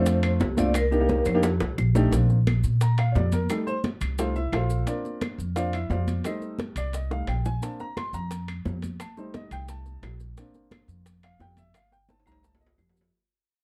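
An up-front upright piano, intimate and boxy with audible action noise, takes a solo from 2.1 seconds in this sunny, sophisticated Afro-Cuban jazz excerpt at 175 BPM in Bb major. It follows a brief vibraphone melody, metallic with fast motor vibrato, that plays only until 1.4 seconds. A woody pizzicato upright bass also sits up front, and ringing metal-shell timbales join thick-skinned, soft-handed congas, tight hard-hand bongos, compressed saturated claves and grainy maracas, with the last four set in the background, while drum fills break in along the way. The dark, dry production fades out over the piano solo as the chords move through Bbadd9, F7, Cm13 and Am7b5.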